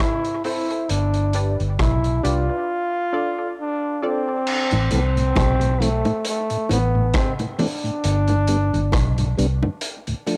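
Recorded at home on cassette, this cut from a longer dub reggae piece carries light reverb and a small-room ambience, with a heavy, hypnotic mood at 67 BPM in A minor and a swung sixteenth feel. A vintage drum kit with a tight kick, hi-hat, rim click and crash sits up front with a rolled-off top, while a dark, foam-muted fingered electric bass enters at 0.9 seconds, round and punchy and up front in the mix. A bright trombone carries the melody with light vibrato and scooped notes, bathed in dub echo and tape colour. Through the opening break, a filtered, detuned sawtooth chord stab with chorus and echo plucks out chords before it stops at 4.4 seconds. At 4.7 seconds a mellow tonewheel organ with audible key click and a slow rotary speaker joins low-tuned bongos played with hard hands and treated with dub echo, over chords that cycle through Am, G and Dm.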